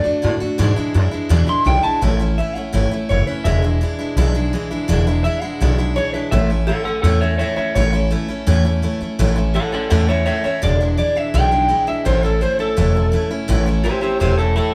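Rockabilly at 167 BPM in A major, upbeat and rowdy, this short cut from a longer piece has a band playing live in one room with a moderate large-studio reverb. A twangy, slightly broken-up electric guitar through a small old amp carries the lo-fi melody up front, and a full-bodied dreadnought acoustic guitar plays picked accompaniment while a woody, growly pizzicato upright bass anchors the low end. The chords move between A and E7 after opening on D, and at 13.5 seconds the electric guitar breaks into a clean solo.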